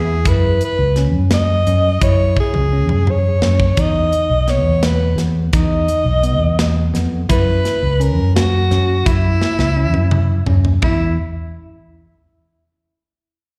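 Driving in 5/8 at 170 BPM with a straight feel, this bright progressive instrumental excerpt, heard live through a venue's PA with recital-hall reverb, sets a breathy, intimate alto saxophone melody with vibrato and scooped notes against bell-like electric piano arpeggios, both carrying slapback echo, over a round, dark fretless bass with analog chorus and a tight metal drum kit whose fills arrive at 2.4 and 9.4 seconds, before the chords fall away at 10.8 seconds.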